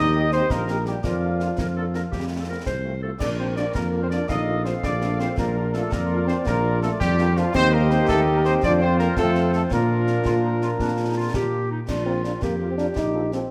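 A mellow, soft-attacked tuba sits up front beneath a dark, tight trumpet section carrying the melody in this proud, festive 6/8 military-style march for wind band, cut from a longer piece, with a background euphonium with light vibrato and a warm woodwind section sharing the second line, a distant, roomy French horn section accompanying from 0.2 seconds, and concert snare drum, concert bass drum and dark-toned clash cymbals entering at 0.3 seconds, set in a moderate scoring-stage reverb.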